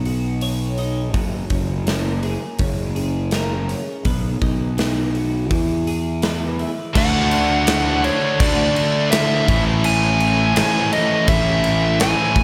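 A dark, smooth overdriven lead guitar carries the melody in this excerpt of quiet-loud alternative rock, entering at 7.0 seconds as the arrangement erupts into its heavy half. The opening moves at 83 BPM in a straight 4/4, with a clean, twangy twelve-string electric guitar picking compressed arpeggios through lush chorus and tape echo over chords of Badd9, F#add9, B and E. Beneath it, a growly, punchy fuzz bass sits up front, and a big acoustic drum kit with a punchy kick, medium-tuned snare, hi-hat and crash rings in a bright stone room. When the twelve-string stops, three distorted rhythm guitars take over riffs in the background: a bright, scooped, double-tracked high-gain part, a heavy high-gain part, and a thick, dark fuzz guitar, all moving between D and A. The mix carries little reverb overall, and the mood feels bittersweet and cathartic.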